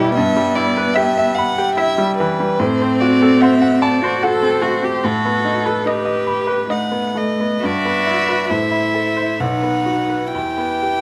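Classical chamber music for piano quartet, this slow romantic movement in E minor unfolds in 3/4 at 61-75 BPM with a rubato feel, its mood yearning and solemn. A bright, polished baby grand piano sits up front as accompaniment, its short sustain and audible action noise giving the texture a present, intimate edge. A dark cello and a rich violin carry second lines from the outset, both bowed sul tasto with soft attacks and vibrato, the cello's top end smooth and the violin's bow airy. At 1.0 s a second violin takes up the melody, its tone warm and lightly vibrato-touched, played close with a soft, airy bow. The harmony moves from E minor through diminished and dominant colours before settling back on E minor by 10.3 s, all within a moderate large-studio reverb that lends the cut from a longer piece a sense of space.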